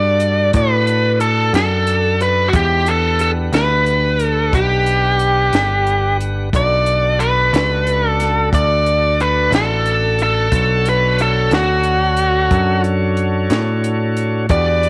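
A straight 12/8 slow-blues pulse at 60 BPM sets a smoky, soulful mood in B minor, where a biting, overdriven lead guitar sings the melody up front over reedy, key-clicking tonewheel organ chords turning through a slow rotary speaker, a bright, direct picked electric bass, and a compact cocktail drum kit that joins at 0.2 s, dark and smooth with a high-tuned snare and punchy kick, the whole passage sitting in a light studio reverb as it moves from Bm7 to Em7 and back before being cut from a longer piece at 14.9 s.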